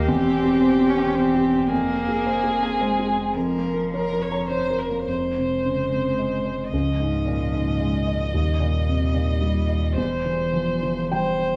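A felt-muted upright piano sits up front in this fragile, reflective neoclassical piece for piano and strings, its soft, intimate tone carrying audible action noise as it accompanies in F minor, in a rubato 3/4 at about 103-114 BPM. A single bowed violin with smooth vibrato carries the melody, a rich cello adds an expressive second line with portamento, and a round sine sub bass sustains underneath. Moderate scoring-stage reverb and small room ambience frame this passage cut from a longer work, which moves from its opening section into a second at 5.1 s.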